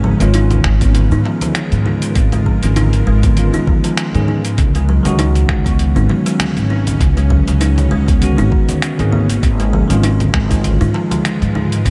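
An up-front pizzicato upright bass with a woody, bright steel-string tone anchors this mystical, meditative organic downtempo excerpt at 99 BPM in G# dorian, with a swung 16th-note feel over G#m69 and C#9sus4 chords. A ringing, hollow kalimba plays arpeggios through analog delay, while a gritty, overdriven sampler-style kit of cabasa, congas, finger snaps and hi-hat is thrown into dub echo, and a thumpy electronic kick joins at 0.6 seconds. In the background, a bell-like, clean tine electric piano enters at 0.2 seconds with lush chorus and sidechain pumping, and a tense, detuned string-like drone holds sustained chords with vibrato and its own reverb, all within an echo-heavy mix.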